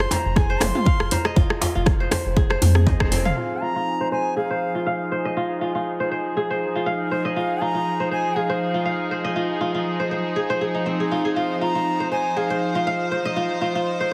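A swung sixteenth-note afro house groove in four opens this warm, driving cut from a longer piece: a punchy, overdriven electronic kick sits up front, with a layered house kit of bright hats, rim clicks and toms, a rattling djembe in the background and a round sine sub bass pumping beneath. This rhythm section drops out by about 3.3 s, closing on a drum fill and a band accent. Throughout, a crisp, fingerpicked kora ripples arpeggios up front with pumping and dub echo, taking on a filter sweep from 3.4 s, while a close-miked bamboo bansuri carries a reedy, tongued melody with vibrato and echo of its own until about 13.1 s. From 3.4 s a floating, soft-attacked studio string section holds sustained chords under its own filter sweep and pumping, all set in a lush hall and squeezed into a heavily compressed, radio-like sound.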